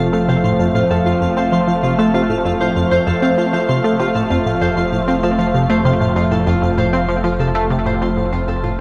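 A tight, driving sequenced synth riff with chorus and delay leads this luminous, cosmic fragment of ambient, sequencer-driven space music, heard alongside a lush, airy pad of detuned sustained chords treated with chorus and phaser, ringing fingerpicked concert harp arpeggios through a low-pass filter and delay, a fat analog bass that fades in across the full 8.8 seconds, and a pulsing, tempo-synced triangle texture with chorus and its own reverb, the mix washed in a huge ambient reverb with a cassette-tape character before fading out from 6.7 seconds.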